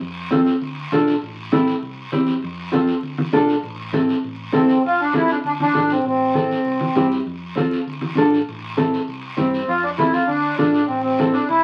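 Cumbia at a brisk 198 BPM in A minor, this passionate, danceable excerpt cycles through F, Dm, Am and C as an up-front, thumb-plucked nylon-string guitar carries the harmony over a dark, round hollow-body electric bass, a raspy, saturated guiro and damped, thick-skinned congas, while a sweet, reedy accordion with a light tremolo tuning takes the melody from 4.5 to 7.1 seconds and again from 9.4 seconds, all heard through a short studio reverb and the crackle of a very old 78 rpm record.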